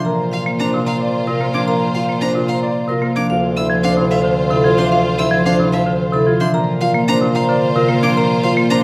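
Bright, percussive marimba struck with hard mallets sits up front, playing a low accompaniment figure in three-four time that anchors this meditative, hypnotic stretch of minimalist classical pattern music, cut from a longer piece. Above it, a metallic, ringing vibraphone carries the melody with a medium motor vibrato, while a concert grand piano with deep bass and long sustain rolls out arpeggios in the middle register. A clear, focused solo violin adds its own bowed arpeggios high above, close and shaded by vibrato. From 0.1 seconds a rich, smooth symphonic string section holds sustained chords, and a dark bassoon with light vibrato supplies the bass line. The harmony moves from Bbsus2 to Dm7 and back to Bbsus2, all set in a recital hall reverb that leaves the ensemble sounding wet and spacious.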